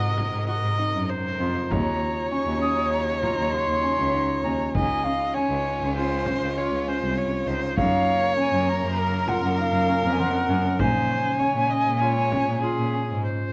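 In an uneven 5/4 meter, this pensive, hypnotic chamber excerpt sets a breathy flute melody above a bowed viola second line and an up-front, vibrato-laden cello bass, while a lush string section holds sustained chords in the background, a fingerpicked concert harp rings out arpeggios, and a deep frame drum played with soft hands enters at 0.2 seconds, all in light reverb and coloured by the warbling pitch drift of worn cassette tape.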